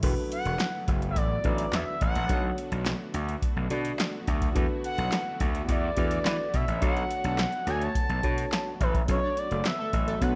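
A gritty, overdriven slap bass drives this slick, funky early-eighties boogie funk excerpt alongside a punchy electro analog drum machine with deep kick and metallic hats, while a smooth portamento lead with vibrato sings over a worn, slightly out-of-tune tine electric piano and a very quiet, warbling brassy pad, with band accents from 6.8 seconds, an electric piano fill, and a fat, dark synth brass line entering at 7.2 seconds.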